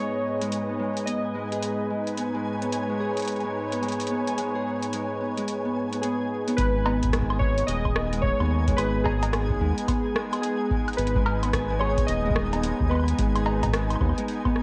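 Glitchy and eerie, this IDM excerpt moves at 109 BPM in G# minor with a swung 16th feel, as a fingerpicked, ringing Celtic harp spins crunchy, filtered arpeggios over a smooth, detuned analog pad, while a flickering granular texture hovers in the background and warbly lo-fi synth keys sound a nostalgic melody that drops out and returns at 6.0 seconds. A booming analog drum machine with metallic hats, cowbell, rim click and woodblock enters at 0.4 seconds, and at 6.6 seconds a deep, dry electronic kick and a round, ring-modulated analog bass with tube saturation arrive up front. The whole mix sits in a moderate echo-chamber reverb and a worn cassette haze with drifting pitch and dulled highs.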